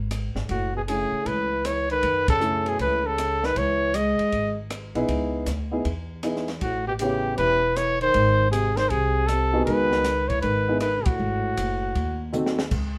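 A moderate studio reverb gives this short cut from a longer piece a gentle glow, setting a late-night, swinging mood in the small-group swing and bop style. Up front, the trumpet carries the melody with a warm tone and light vibrato, while the breathy trombone plays a mellow second line with scooped notes beneath it. A dark, vintage upright piano supplies woody accompaniment. Underneath, a pizzicato upright bass with steel strings anchors the group, and a compact cocktail drum kit with a high-tuned snare, punchy kick and rolled-off top keeps the swing moving. The harmony passes through F#m9, C#m9, A7 and altered dominant chords, with the full band hitting accents at 2.2 and 11.0 seconds before a drum fill at 12.3 seconds closes the passage.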